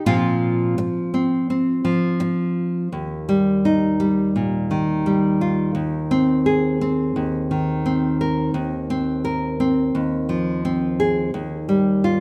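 A bright, full-bodied nylon-string guitar, fingerpicked up front in a classical manner, carries this pastoral, nostalgic folk piece alone at a straight, unhurried 85 BPM in Eb major, opening on Bbsus2 and settling at 2.9 seconds into Eb, Ab/Eb and F5/Eb before resting on Ebadd9 near 11.3 seconds, all bathed in a moderate recital-hall reverb in this short cut from a longer work.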